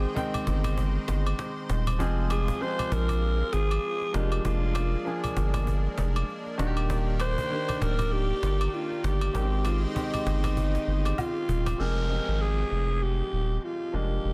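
Afrobeats at 98 BPM with a swung sixteenth-note feel, this short, joyful and sunny cut from a longer piece centers on a breathy alto saxophone that carries the melody up front, its mellow, raspy tone touched with vibrato and a trail of delay. Beneath it, a saturated sub bass sits deep and thick with a fast attack, while a polished grand piano adds present accompaniment and a lush, detuned unison pad with chorus holds bright sustained chords. A woody cajon played with soft hands, faint snares audible, drives the groove, joined at 0.3 seconds by agogo bells and woodblock set in a small acoustic room. The harmony moves through Abmaj7, Fm, Bb7/F and Ebmaj7 before a drum fill at 10.6 seconds closes the first section. At 11.8 seconds the cajon, percussion and pad stop as an electronic downlifter sweeps in over saxophone, piano and bass on an Fm chord. The whole is bathed in studio reverb and delivered as a dense, heavily limited modern master.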